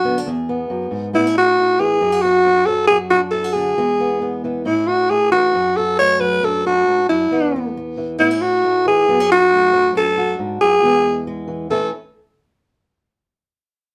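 A growling alto saxophone and a fingerpicked acoustic guitar open together on this carefree, joyful highlife piece in A major at 136 BPM, played live by a band in one room. The raspy, subtone sax sits up front with scooped notes and a jazz-style solo melody, while the dark, boxy guitar supplies swing-style accompaniment further back over a cycling A, F#m, D/F# and E progression. A moderate studio reverb gives the pair a natural space, and the clip is cut from a longer piece, with both parts stopping at 11.9 seconds.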